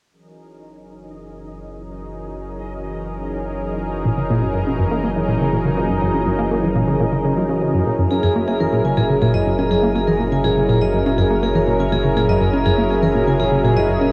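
A lush, thick unison pad sits up front with chorus, fading in alongside a deep, round sub bass and a bubbling, resonant stepped-filter texture in the background, setting a cosmic, expansive mood for this sequencer-driven ambient space music. At 4.1 seconds a tight, driving sequenced synth riff joins with chorus and tape echo, and at 8.1 seconds a metallic, ringing vibraphone struck with hard mallets adds bright arpeggios through tape echo. A huge, wet reverb and the warble of worn cassette tape wrap the whole passage, which is cut from a longer piece.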